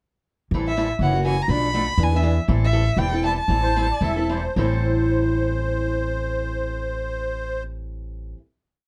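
This is a dark, warm recording with little reverb, giving a short, complete piece of acoustic string swing in the jazz manouche style a bittersweet yet fiery character. A picked, boxy old ladder-braced acoustic guitar keeps a four-to-the-bar rhythm, short and accented on two and four. Beneath it, a woody, thumpy upright bass plays pizzicato on gut strings in a two-beat root-and-fifth pattern. Up front, a single bowed violin with plate reverb carries a motif-based melody of call phrases, with vibrato, soft attacks and expressive portamento. A reedy musette accordion with shimmering tuning enters at 3.6 seconds and plays answering phrases in the melody's rests. The music slows from 2.5 seconds and comes to rest on a final chord at 4.6 seconds.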